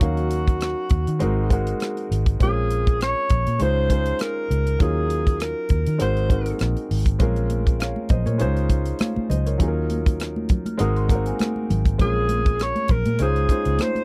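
Lush 1970s-style soul in Bb minor at 100 BPM with a light sixteenth-note swing, smooth and cinematic, cut from a longer piece and captured in a dry, close studio sound. An alto saxophone in jazz style, with vibrato, carries the melody up front. It falls silent after its opening phrase and returns at 12.0 seconds, over a short-sustain baby grand piano, a dark, round, foam-muted electric bass and a tight, polished funk kit of hi-hat, kick and rim click, all cycling through Ebm9, Ab9, Bbm9 and Dbmaj9; soft-handed, high-tuned congas join in the background at 7.2 seconds, and a bell-like, delicate celesta rings briefly from 10.7 seconds.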